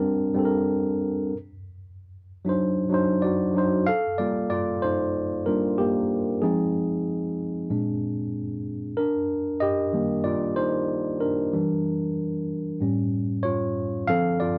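Late-night and smooth, this short cut from a longer R&B piece moves at 94 BPM in G minor with a light 16th-note swing. A worn, slightly out-of-tune tine electric piano is featured, clean and up front in a moderate studio reverb. It moves through rich extended chords such as Bb69, Gm9, Ebmaj9 and Aaug7, and its solo starts at 3.9 seconds.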